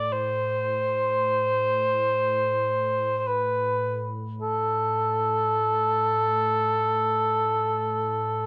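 In free time, this short cut from a longer Caucasian folk lament in A minor, tuned to A4 = 439 Hz, carries a longing, solemn mood. Up front, a solo cor anglais sings the melody between A4 and D5 in a classical style, its mellow tone punchy yet smooth on top with a light vibrato. Beneath it, a quieter, vintage-sounding evolving wavetable pad holds a sine-like drone on A2, slow to bloom and long to fade, morphing and warbling through chorus and its own reverb, while a wet spring reverb and worn cassette tape with warbly pitch drift give the whole piece a hazy, aged character.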